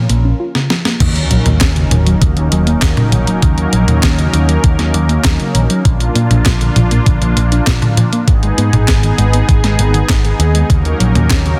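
Dense, heavily limited and lightly reverberant, this nocturnal, moody synthwave excerpt in Eb minor at 99 BPM sets a smooth, detuned analog sawtooth pad with chorus and sidechain pumping and a soft, round pluck playing chorused, delayed arpeggios under a dark, punchy picked electric bass and an up-front, tape-tinged 12-bit drum machine of snare, hi-hat, handclaps, toms and crash, whose fill at 0.5 seconds gives way at 1.0 seconds to a thumpy electronic kick and, a moment later, a background sub drop.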